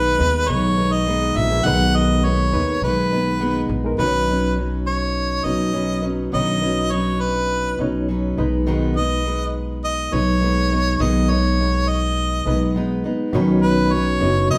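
Over a straight, easygoing 4/4 pulse, this carefree, sunny acoustic pop passage, cut from a longer piece, is led by an up-front solo harmonica, punchy and warm, with vibrato and scooped notes carrying the melody. A full-bodied picked dreadnought acoustic guitar and a reedy, lightly overdriven electric piano with fast tremolo, sitting in the background through its built-in speakers, fill out the chords. A growly, woody pizzicato upright bass sits up front beneath them, all from a band playing live together in a large studio with a wet, roomy reverb.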